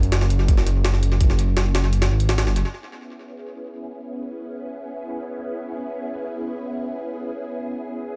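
A thick, menacing detuned saw bass growls over F#sus2 alongside gritty, pitched-up jungle sampler drums with a thumpy kick, high-tuned snare, overdrive and tape echo for the first 2.6 seconds, before a silky vintage string machine drifts in at 3.0 seconds with phaser and ensemble chorus on a sustained C#m7, giving this frenetic, raw, free-time drum and bass fragment an echo-heavy, lightly reverberant digital ambience.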